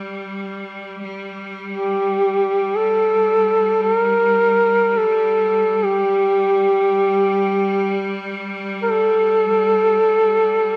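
A lightly reverberant, solemn and mournful excerpt of a Caucasian folk lament in free time and G minor, where a distant, biting cello section holds a bright, intense bowed drone on G3 from the start while a dark, up-front solo duduk enters at 1.7 s with a vibrato-laden melody of scooped notes and a smooth top between G4 and Bb4.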